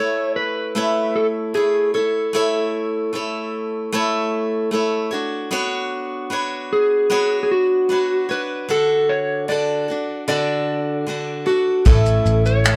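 Carefree and sunny, this acoustic pop fragment pairs a dark, slightly broken-up electric slide guitar melody with bright picked steel-string acoustic guitar over chords moving from A through Bmadd9 and D, before a round, foam-muted vintage bass and a smooth brush kit with finger snaps, shaker and a punchy kick join at 11.9 seconds, all captured as a band playing live in one room with light reverb.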